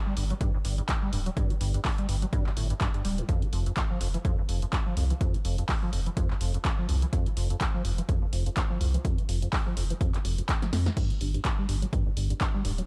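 This is a trippy, playful acid house excerpt at 125 BPM in 4/4, with a 56% swing on the sixteenths giving the groove a loose bounce. A punchy, tape-warm electronic kick sits up front beneath an analog drum machine of crash, handclaps, hi-hat and snare, the claps, hats and snare carrying a short room sound, and a drum fill arrives at 10.6 seconds. Beneath them, a deep, thick sine sub bass with saturation and a sustained tone pumps against the kick from 0.2 seconds, moving between D1 and F2. The liquid acid bass riff, squelchy yet smooth, is a resonant square wave with a filter sweep, a fast attack and decaying notes, subtle chorus, digital delay and its own sidechain pumping, running from F2 to G3. Harmony starts unanchored, settles on F5 at 3.3 seconds and shifts to G5 at 11.0 seconds, all within a dark, dry production.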